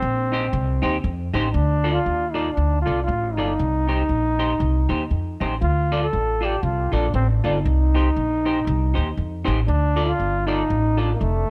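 Mischievous and driving, this ska excerpt at 118 BPM swings in C dorian over a Cm to Dm vamp, with a vintage trombone carrying the melody up front through analog delay, a woody, thumpy pizzicato upright bass on gut strings anchoring the low end, and a dark, clean semi-hollow electric guitar adding fingered accompaniment bathed in lush chorus from 0.3 seconds, all set in a small room with light reverb.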